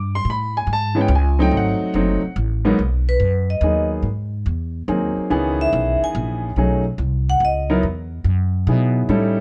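Swinging and late-night, this short excerpt of small-group jazz moves at 142 BPM in a lilting 3/4 swing, in G# minor, with a deep-voiced concert grand piano comping and a woody, thumpy pizzicato upright bass sitting up front throughout. At 3.1 seconds the vibraphone enters with a metallic, ringing solo struck with medium hard mallets, its slow motor vibrato colored by a boxy small-room sound, carrying the melody until 7.7 seconds. The harmony travels through rich extended chords such as G#m9, C#m9 and B13 before reaching Emaj9, all under light reverb with a soft, rounded top end.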